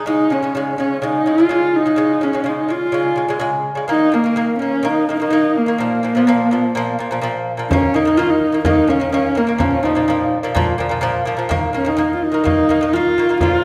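Bright, delicate fingerpicked lute arpeggios on gut double strings open this windswept, solemn fragment of Mongolian folk music, joined almost at once by a dark, husky horsehead fiddle singing the bowed melody with vibrato and portamento up front, before a close, soft-handed frame drum enters at 7.7 seconds, all set in the lingering reverb of a concert hall.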